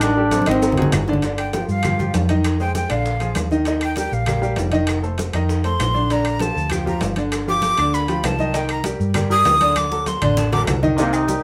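A driving, danceable salsa groove in 4/4 at 197 BPM is carried by thick-skinned congas, tight high-tuned bongos and cowbell, ringing metal-shell timbales with agogo bells, woody claves and grainy maracas, while a dark, round hollow-body electric bass and a brilliant, slightly worn baby grand piano with audible action noise sit up front in G minor. A vibrato-laden duduk with scooped, folk-style notes and a distant, mellow trombone section open this excerpt briefly and return at 11.0 s. Between them, a breathy jazz flute with a crisp, chiffy attack takes a solo from 1.4 s over shifting harmony, framed by drum fills and a moderate studio reverb.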